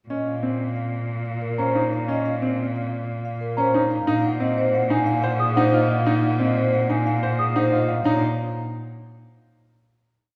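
Classical minimalist pattern music in Bb minor at 181 BPM in 6/4, this hypnotic, urgent piece sets a ringing vibraphone with soft mallets and fast motor vibrato repeating a short melodic cell over brilliant baby grand piano arpeggios and long, rich bowed cello bass notes with smooth vibrato, with a delicate, bell-like celesta joining at 1.6 s with its own sweet arpeggio cell, as the harmony moves from Bbm to Ab7/Bb before a final chord at 8.1 s rings out in a scoring-stage reverb heard from further back in the room.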